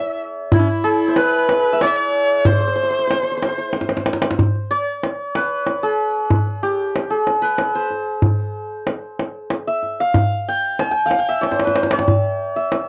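A shimmering, ringing hammered santur carries the melody up front in this stately, warm Persian modal ensemble piece at 93 BPM in 3/4 (tuned to A4 = 441 Hz), joined by a smooth, boxy bowed kamancheh second line with vibrato and portamento that drops away at 3.7 s as the tight, band-limited tombak, in from 0.5 s, plays a fill, with another tombak fill at 11.4 s, all in a dry, close, vintage 1970s-style studio sound with light reverb, cut from a longer piece.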